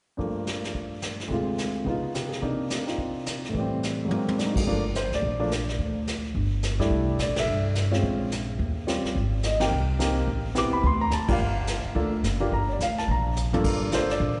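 A church reverb with a 2.9-second tail bathes this moody, smoky jazz piano trio, and the whole recording sits beneath 10.8 kHz, giving it a dusky, hall-like glow. At a brisk 214 BPM in 4/4 with a light swing, a warm, natural baby grand carries the melody from the outset, sitting up front with short sustain and ranging from low D2 up to D6. A vintage brush kit accompanies it from the start, its dark cymbals, medium-tuned snare and punchy kick giving a small-room, warm character with a rolled-off top, with a drum fill at 4.1 seconds. A pizzicato upright bass joins at 4.7 seconds, woody and thumpy on steel strings, placed close alongside the piano in its low register. The harmony moves through rich jazz chords from Gm9 back to Gm7, with a brief chordless moment and several sharp band accents in the second section, and the clip is cut from a longer piece.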